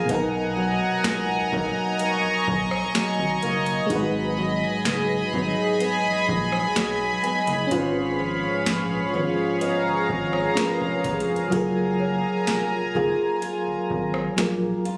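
Romantic and tender, this contemporary R&B excerpt moves at an unhurried, straight pace over a gentle cycle of Bmaj7, G#m7 and C#7/G# chords. A shimmering, retro pulse-width pad sits up front with bright, chorused sustained chords, while a mellow FM electric piano with tremolo supports it with warm accompaniment. A full-bodied nylon-string guitar plays fingerpicked arpeggios through a delay, its finger squeaks audible. Underneath, a rubbery, bouncy square bass anchors the low end, and a booming analog drum machine, with a deep kick, crisp snare, rim click and metallic hats, sounds as if it was re-recorded in a large room. A small, bell-like celesta adds delicate, very quiet touches from 0.1 seconds and again from 7.2 seconds, and the whole mix has a light reverb and the character of a phone recording made in the room.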